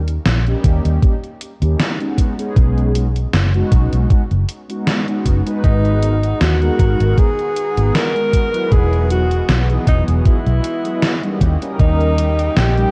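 A dark, warm cassette-tape sound with light reverb frames this melancholic, woozy vaporwave excerpt, moving at 78 BPM in G# minor with a slight swing. An up-front, foam-muted electric bass and a thumpy electronic kick anchor the groove, while a gated 80s drum machine adds hi-hat and a gated-reverb snare, and a mellow, detuned synth brass with lush chorus and analog delay carries the chords. At 5.6 seconds a breathy, close-miked alto saxophone enters with jazzy, scooped notes and vibrato, joined by a thick, bright unison pad sitting in the background.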